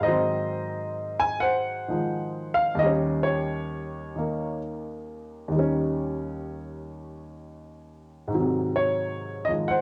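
A baby grand piano carries this short solo jazz fragment alone, sounding intimate and natural, with a short sustain and audible action noise, placed up front. The mood is sophisticated and swinging, with swung eighth notes in 4/4 and a rubato feel. The harmony moves from Ab7 to Eb7 at 2.8 seconds and returns to Ab7 at 8.3 seconds, as the playing ranges from Eb2 to Ab5. The piano carries a cassette tape coloring, while moderate spring reverb and small room ambience give this home recording a lived-in character. Lasting just under ten seconds, it is cut from a longer performance.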